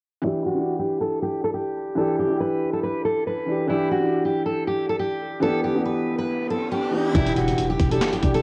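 Cassette-recorded at home with moderate reverb, this dark, melancholic half-time hip hop and trap excerpt opens with a full-bodied fingerpicked steel-string acoustic guitar melody over a mellow, boxy grand piano, both low-pass filtered and tape-treated under a filter sweep, until a background electronic riser enters at 6.1 s and gives way to an impact at 7.2 s, where a growling, buzzy 808-style bass arrives alongside a gritty, compressed sampler-style boom bap kit sitting up front with thumpy kick, high-tuned snare, handclaps and hi-hat.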